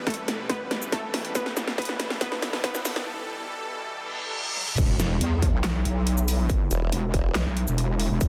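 Chaotic and menacing, this heavy wobble dubstep clip, cut from a longer piece, moves in a half-time feel and charges from a build-up into a drop at 4.8 seconds. A lush, detuned supersaw pad sits in the background under a low-pass filter and sidechain pumping, while a bright, punchy unison pluck carries the melody through a digital delay until 3.0 seconds, its ring-modulated sawtooth tone decaying. The dubstep drum kit is overdriven and up front, with a huge snare, bright hats, handclaps, shaker, toms and crash cymbal, re-recorded in a small room and rolling through drum fills, all over a layered, distorted electronic kick. A very quiet riser, reverse cymbal and sub drop lead into the drop, where a saturated, square-wave wobble bass with chorus and overdrive enters, joined briefly by a sawtooth wobble bass with a formant filter sweep between 6.7 and 7.4 seconds. The master is dense and heavily limited, with light reverb.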